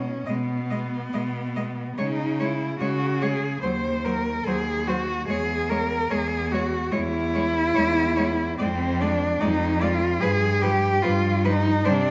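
Flexible rubato phrasing shapes this slow 4/4 passage at about 73 BPM, a lyrical, elegiac fragment for a cello ensemble, cut from a longer classical piece. Two of the four bowed cellos, one player each, sound from the start: a bass line reaching down to Eb2 and a rich, soft-attacked second line sliding between notes with portamento and expressive vibrato. From 0.3 seconds a smooth, even melody sits up front in the upper register, reaching D#5, while a focused, clear accompanying cello murmurs in the background around F3 to G#3. The yearning harmony drifts through G#m/B, diminished chords and C#m/E before coming to rest on a G7 sonority at 10.2 seconds. A resonant recital-hall reverb with a 1.4-second decay gives the players a soft, mellow glow in this 12-second excerpt.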